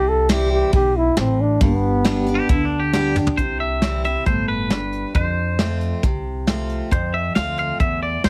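A straight 4/4 shuffle-free country groove opens this sunny, nostalgic honky-tonk excerpt, with a soft brush drum kit entering at 0.3 seconds, its punchy kick and medium-tuned snare sounding dark and smooth in a small room. A mellow trombone carries the melody up front at the start with a soft attack and light vibrato in a classical style, stopping at 2.9 seconds as a drum fill leads into the next section. Underneath, a woody pizzicato upright bass and a bright, full-bodied picked steel-string acoustic guitar, complete with finger squeaks, hold down the accompaniment over a simple move from C to G and later to F. A twangy electric guitar joins at 2.4 seconds as a second line, clean, compressed and treated with tape echo, and takes a solo from 3.4 seconds onward. The whole mix sits in light reverb with a heavily compressed, radio-like sound that adds to its vintage charm.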